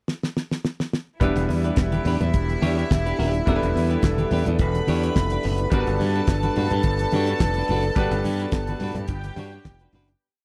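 A dry, close 1970s-style studio sound frames this joyful, danceable disco piece, which opens with a damped drum-kit fill before the full groove arrives at 1.2 seconds and fades out from 8.0 seconds. Up front, a fat snare layered with handclaps and a tight kick drive a four-on-the-floor beat with open hi-hats on the off-beats, while a growly, punchy fingered electric bass plays an octave disco line with chromatic approach notes over Em7 and Gmaj7. Choppy sixteenth-note semi-hollow guitar, held drop-2 chords with grace notes on a brilliant grand piano with audible action noise, floating long high string lines, a background French horn pad with light vibrato, and very quiet, low-tuned congas playing a syncopated groove fill out the arrangement.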